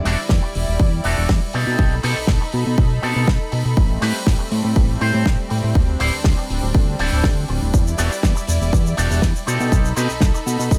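A small room frames this groovy, sensual nu-disco excerpt: a dry 70s drum kit with hi-hat, shaker and a medium-tuned snare plays from the start alongside the pad and guitar, and a punchy, tape-warm electronic kick sits up front from 0.3 s. A fat, detuned analog bass with a filter sweep anchors the low end, while a clean, twangy electric guitar plays a riff through an envelope filter, with subtle chorus and dub echo. A lush, nasal unison pad holds sustained chords with chorus and sidechain pumping over a cycle of Em11, B7b9b13, Am9 and D9sus4.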